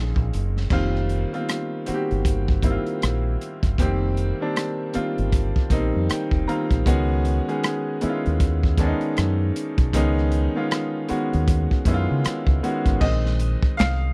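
R&B and neo-soul with a soulful, late-night swing, this short cut from a longer piece sets a bright, woody upright piano over suspended ninth chords, a round, punchy fingered electric bass and a gritty, saturated breakbeat kit with dark cymbals, tight kick, rim clicks and finger snaps, all in a dry, close 1970s-style studio sound, with the piano taking a fill around 5.7 seconds and a brief solo from 13.0 seconds.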